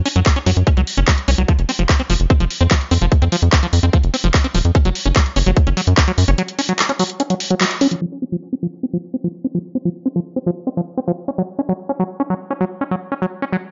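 A squelchy, resonant liquid acid bass riff with chorus and tape echo pumps through this alien psychedelic trance excerpt over a punchy sawtooth sequencer bass, an overdriven electronic kick and an overdriven drum kit of handclaps and bright hats, until the kick and sequencer bass drop out near 6 seconds, the band hits an accent at 7.6 seconds, and the acid bass carries on alone under a filter sweep from 8.0 seconds in a lightly reverberant, dark-topped mix.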